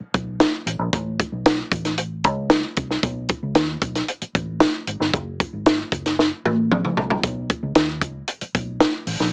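A straight 4/4 groove drives this brief, uplifting slice of uptempo 1960s-style soul, where a compact cocktail drum kit of hi-hat, kick, snare and toms sits dry and up front with a high-tuned snare and tight kick, breaks into a fill at 6.2 seconds, and rides over a dark, round, foam-muted electric bass set lower in the mix, all heard through a heavily compressed, small-speaker radio sound with light reverb.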